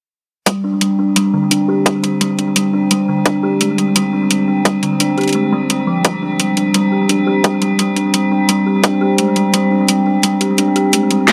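This dark, heavy half-time drum and bass excerpt at 172 BPM opens at 0.5 s with a woody, hollow kalimba ringing out thumb-plucked arpeggios through a low-pass filter sweep and digital delay over G5 and Fm/G harmony, alongside an up-front, overdriven kit of cracking snare and bright swung hi-hats and a tight, layered electronic kick that stops at 8.9 s, while an eerie, warbling metallic drone on C4 swells in at 0.9 s with chorus, all set in a huge ambient reverb.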